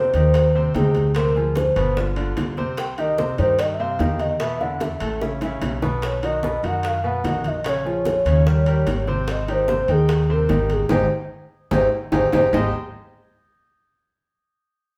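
Afro-Cuban jazz with a sophisticated, sunny mood, this excerpt from a longer piece sets a pure, breathy sine lead, colored by chorus, vibrato and portamento, over clear baby grand piano accompaniment and a woody, thumpy pizzicato upright bass up front. Tight, high-tuned bongos, soft-handed low-tuned congas in the background and ringing, distant metal-shell timbales fill out the percussion, with drum fills at 5.2 and 11.9 seconds and a band accent arriving at 10.9 seconds. The group plays live in one room with moderate studio reverb, the harmony moving from Abmaj7 through Bbm7 and Eb7 before returning to Abmaj7.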